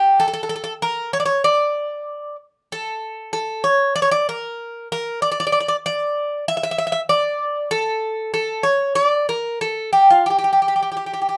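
A solo Greek bouzouki carries this short Greek folk excerpt, its picked double strings ringing with a metallic, octave-doubled shimmer as it moves between F4 and E5 in a straight 4/4. The mood is cool and bittersweet, with the acoustic instrument placed up front in a modest small-room reverb. The rough home-demo sound keeps the 11-second fragment intimate and unpolished.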